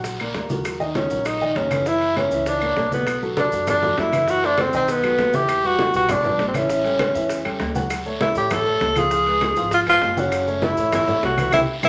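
A breathy tenor saxophone takes the solo up front from 1.0 s, singing with vibrato and scooped notes in this sultry, driving Afro-Cuban jazz excerpt at 198 BPM in 4/4, settling into B minor at 3.1 s. Beneath it, a dark, mellow upright piano with audible action noise and a thumpy pizzicato gut-string upright bass carry the harmony. Low-tuned, damped congas, tight high-tuned bongos, ringing metal-shell timbales, woody claves, a raspy saturated guiro and grainy maracas drive the groove in a big, wet studio reverb, closing with a drum fill and band accent at 11.5 s.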